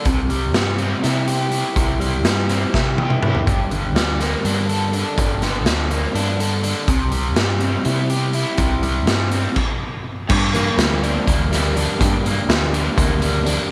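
A hypnotic, trippy slice of psychedelic rock in a lurching 7/8, cut from a longer piece. An overdriven, double-tracked electric guitar sits up front with a bright, compressed riff, its harmonic tremolo adding a wavering shimmer as the chords move from C to Gmadd9 and back. Beneath it, a deep, round picked bass anchors the low end, while a raw garage drum kit brings a punchy kick, gritty saturation and a pumping stone-room sound, rolling through a fill around 2.7 seconds. The band halts briefly at 9.6 seconds, and when it returns at 10.3 seconds on G minor, very quiet, high-tuned congas ring softly in the background. A light studio reverb ties the parts together in a close, raw space.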